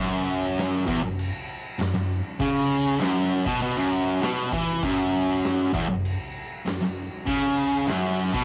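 A straight 4/4 groove at 98 BPM drives this swaggering, raw garage rock excerpt, where a bright, double-tracked fuzz guitar sits up front with a distorted, compressed riff from the start, joined at 0.6 seconds by an oversized low-tuned drum kit with a punchy kick, fat snare and dark crash cymbal that sounds gritty and pumping in a big room, all captured as a home recording on cassette with moderate reverb.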